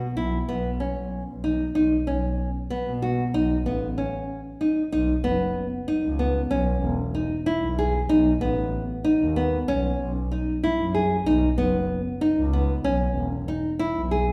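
A wet recital-hall reverb surrounds this short piece of playful, restless contemporary chamber music in 5/8, cut from a longer work. A bright, classical nylon-string guitar sits up front, fingerpicking arpeggios with audible finger squeak, while a single bowed double bass, played con sordino with vibrato, adds a dark, veiled bass line. After a brief break from 4.1 to 4.9 seconds, the music moves into its second section, circling chords such as Badd9, E6 and B7.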